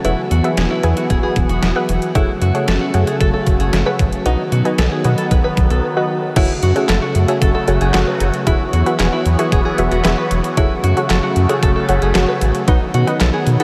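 Nocturnal and melancholic, this synth-pop excerpt moves at 114 BPM in F# dorian, with a round, deep analog bass and a thumpy, overdriven 8-bit drum machine up front, a sweeping, resonant pad holding chorused chords, and a warbly, dusty pluck murmuring lo-fi accompaniment in the background. An open-back banjo adds plunky, twangy fingerpicked arpeggios trailed by diffuse ambient delay, all set in a dreamy mix soaked in huge reverb. A short break at 5.8 seconds leads into a new section at 6.4 seconds, as the chords cycle through Eadd9, F#madd9 and B.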